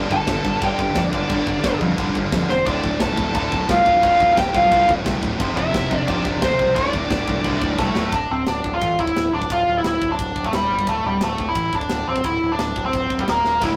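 A nasal lead guitar with a parked wah sits up front, carrying a dark, overdriven melody through this brief, heavy metal passage, while a second high-gain lead guitar adds a quieter line in the background until 7.8 seconds. Two bright, high-gain rhythm guitars play the riff until 8.1 seconds, returning only for a moment near the end, as a growling overdriven bass and a tight metal drum kit with bright cymbals and a big-room sound drive on, with fills at 2.5 and 13.4 seconds. The rough rehearsal-room recording, with its tube saturation and light reverb, gives the dark, heavy mood a raw edge.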